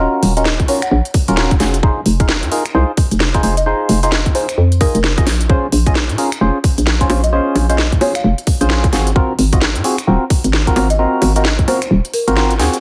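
Soulful and skippy, this two-step UK garage excerpt at 131 BPM swings its 16ths over Ebm9, Fm7, Bbm9 and Ab13 chords, as a hollow, bouncy FM bass knocks up front with sidechain pumping, nasal, wave-folded organ stabs with chorus and tape echo punctuate the groove, a woody soft-mallet folk marimba carries a rustic melody with tape echo in the background, and a tape-warm garage kit of cracking snare, crisp hats, bongos and finger snaps rides with a tight electronic kick that drops out at 11.9 seconds, all in light reverb.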